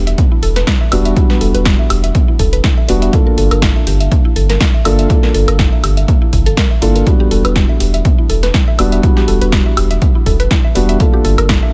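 Deep house at 122 BPM in E minor, this moody, late-night fragment from a longer piece swings its sixteenths gently over chords of Em9 and Gm9. A punchy electronic kick sits up front alongside an analog drum machine playing hi-hat, a punchy snare and woodblock, both carrying the boxy character of a small room. Beneath them, a round sine sub bass holds low and sustained, breathing with sidechain pumping. A felt-muted upright piano supplies dark, intimate stabs with audible action noise and a vintage softness, its tape echo trailing each chord as it pumps against the kick. Woody FM plucks with a mallet-like attack and short decay spin arpeggios above, thickened by chorus and tape echo, while the whole mix stays dry and close.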